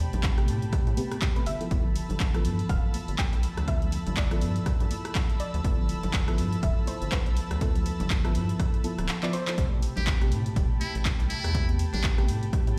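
Deep house at 122 BPM in 4/4, with a swung sixteenth feel and a deep, moody atmosphere, this short cut from a longer piece moves from Am9 to G13 and back to Am9 at 9.6 seconds. An up-front, punchy electronic kick drives the groove alongside a tape-warm analog drum machine playing handclaps, hi-hat and rim click, while high-tuned, ringing congas played with soft hands sit close and dry in the background. A rubbery, hollow square bass bounces underneath with sidechain pumping, and a mellow FM electric piano adds dark, warbling stabs treated with chorus and delay. Above them an airy, breathy pad holds sustained chords with a slow attack and a touch of vintage 12-bit sampler grit, while a soft, round pluck carries a gentle background melody through analog chorus and delay until 10.5 seconds. After a drum fill at 9.2 seconds, a brilliant, buzzy trumpet with metal mute steps forward at 10.0 seconds for a brief jazz-style solo with scooped notes and light vibrato, trailed by tape echo. 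The whole mix sits in a large studio reverb, like a big sound system heard in a bare room.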